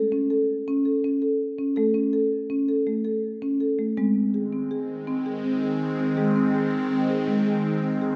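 A dark, reverberant recital-hall sound frames this short, gentle piece of meditative world music, moving at 54 BPM in a relaxed 6/8. A marimba played with soft mallets carries woody, round arpeggios up front throughout, over a shift from A to G# at 4.0 seconds. At 4.3 seconds an evolving wavetable pad enters with bright, detuned sustained chords, colored by phaser and its own reverb.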